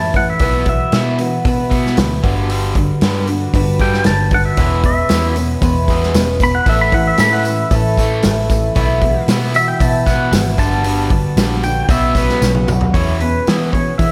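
A lightly reverberant studio sound frames this jangly, nostalgic folk and heartland rock excerpt at 115 BPM in a straight 4/4. A clean, compressed pedal steel guitar takes a slide-laden solo with volume swells and slapback echo over a shimmering, octave-doubled twelve-string acoustic guitar, while a biting, double-tracked overdriven guitar riff, a round, foam-muted electric bass and an up-front country drum kit with a punchy kick carry chords such as Bsus4, Gmaj7 and E6. A bright tambourine jingles in the background from 5.1 s, and a drum fill at 12.4 s leads into a new section at 12.9 s.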